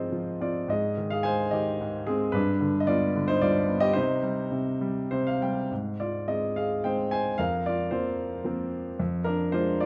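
Dark, warm production sets a smooth, vintage grand piano up front in a recital hall with moderate reverb that lets notes linger for about 1.5 seconds. This brief classical fragment for solo piano is moody and bittersweet, moving in a lyrical 3/4 with a rubato feel at roughly 98-113 BPM, and ranging from low F2 up to Ab5. Its harmony drifts from Abmaj7 through G7 to C minor before a short piano fill at 4.8 seconds leads into a new passage at 5.7 seconds, where Ab gives way to Fsus4 and finally an unsettled Ddim/F.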